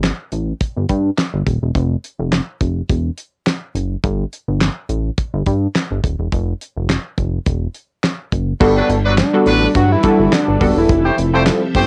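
Early-eighties boogie funk with a smooth, feel-good mood at 105 BPM in G major, where a glossy, chorused synth bass and a dry, damped 70s drum kit with a fat snare, tight kick, handclaps and cassette-tape grit carry the opening alone until about 8.6 seconds, when a nasal, punchy polysynth comp, a tight, clear horn section, a lush but very quiet string machine and a fat analog lead with vibrato crowd in one after another over Gmaj9 and Fmaj9 chords, all wrapped in light reverb with the hazy character of a home cassette recording.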